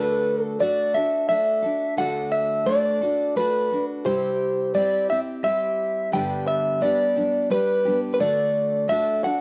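A twangy, slightly broken-up electric guitar played through a small old amp carries the melody up front with a cassette-tape tint, over a full-bodied picked steel-string acoustic guitar playing accompaniment through D, C and G in this sunny, down-home country piece at 87 BPM in 3/4, tuned to A4 = 437 Hz, cut from a longer piece and captured as a home cassette recording with moderate spring reverb and small-room ambience.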